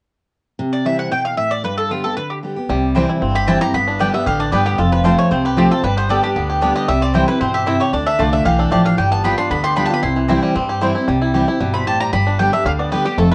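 Bluegrass in C major at a brisk 229 BPM in straight 4/4, this joyful, rustic passage is cut from a longer piece. A full-bodied, picked dreadnought guitar with fresh strings opens the accompaniment at 0.6 s, joined almost at once by an up-front mandolin carrying the melody in its woody, double-string voice. At 2.7 s a twangy, fingerpicked banjo adds bright, percussive arpeggios while a thumpy pizzicato upright bass settles into the low end, and from 2.9 s a second mandolin contributes stabs until 10.9 s. The harmony moves through C, G, F, Dm and G7 before returning to C and closing on G. The sound sits in a moderate studio reverb and carries the character of worn cassette tape, with warbly pitch drift and a dulled top end.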